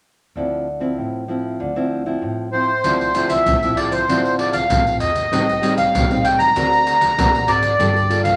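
A reedy, sweet accordion with light tremolo tuning carries the melody up front from 2.5 s in this yearning, bittersweet samba and choro excerpt, joining the fingerpicked, classical nylon-string guitar and the woody, growly pizzicato upright bass in the background that both begin at 0.4 s, before maracas, surdo and pandeiro arrive at 2.8 s, distant in a large room with a tight surdo and hard hands, all set in a moderate studio reverb.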